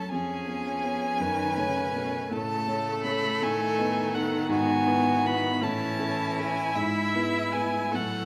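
Lyrical and tender, this slow romantic movement for piano quintet unfolds in E major at 54 beats per minute in 6/8, shaped with a free rubato. All five players sound together across the roughly 8-second passage, cut from a longer work. A single bowed violin carries the melody up front with a rich, focused tone and vibrato, while a second violin and a close viola supply smooth, even lines beneath it. A focused cello sits in the background, and the grand piano, placed up front, has a dark, mellow, worn character with an intimate, vintage quality and audible action noise. The harmony drifts from C#7 over E# through F# minor, A and B7 over A before settling on E over G#, all set in a moderate recital-hall reverb.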